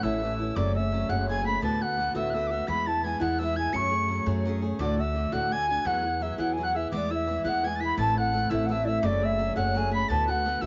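A lilting 6/8 jig at 113 BPM, counted in dotted quarters with a straight feel, drives this lively Celtic folk excerpt in E mixolydian. A mellow wooden flute carries the melody with tongued notes and a slightly unsteady, distant tone. A reedy tin whistle plays a second line high above it, close-miked, with a soft attack and vibrato. Underneath, an up-front picked steel-string acoustic guitar gives a bright accompaniment, where finger squeaks can be heard, and a growly pizzicato upright bass anchors the low end. All four parts play together throughout, moving through chords such as F#madd9, D6 and E, and the strain begins again at 6.9 s. Light reverb gives the sound a small-room ambience.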